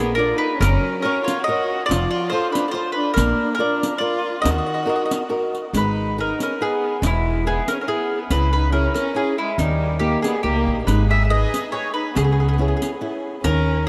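A mellow, round mandolin carries the melody up front through a diffuse ambient delay in this romantic, wistful Italian folk serenade at 140 BPM in 3/4, shadowed by a dark, expressive violin line with vibrato and portamento, over bright fingerpicked flamenco guitar with audible finger squeak, a woody, thumpy pizzicato upright bass, and a riq with dark jingles entering at 0.6 s, all soaked in a huge dreamy reverb as the harmony moves from Eb harmonic minor into G# harmonic minor at 5.7 s.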